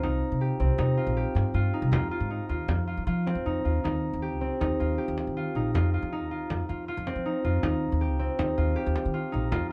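Restless and urgent, this contemporary chamber piece is cut from a longer work and pushes forward in an uneven five-beat meter with a straight feel. A concert harp sits up front, playing mellow, thumb-plucked arpeggios that ring in a narrow middle register between C4 and G4. Beneath it, an upright bass with steel strings plays woody pizzicato lines that reach from Bb1 up to F3, also placed close to the listener. A large frame drum adds deep, hard-handed strikes with a compressed, saturated edge, sitting a little lower in the mix than the strings. The harmony opens on Cm and shifts to a new passage at 3.8 seconds that moves between Eb and F5, all three instruments playing throughout, wrapped in light reverb and a dark production.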